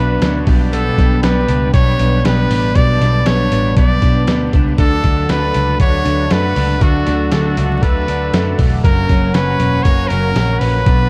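A bright, present trumpet carries the melody over a gritty, pitched-down boom bap drum kit and a round, foam-muted picked bass in this bittersweet, wistful jangly indie pop excerpt at 118 BPM, with clean direct-recorded guitar arpeggios drenched in lush chorus, a faint crunchy overdriven guitar, a very quiet reedy combo organ with light vibrato and a mellow detuned sawtooth pad moving through G, D and F# chords in a dark production dusted with vinyl crackle.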